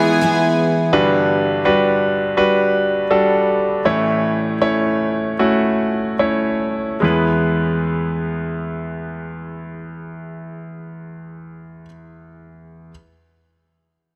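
Set in a moderate plate reverb, this excerpt from a longer pop piece feels anthemic and uplifting. At the outset, a close studio violin section floats with a pure, sul tasto tone, its soft bowed attack touched by digital delay. Alongside it, a picked dreadnought acoustic guitar plays a full-bodied riff. Both drop away within the first couple of seconds, leaving the bright concert grand piano alone in its accompaniment role until 12.9 seconds. Up front and polished, the piano reaches into a deep bass with brilliant, short-sustained notes, moving from E through Gmaj7 to A and back to E. The pace slows between 0.9 and 7.0 seconds before the music settles into its next section.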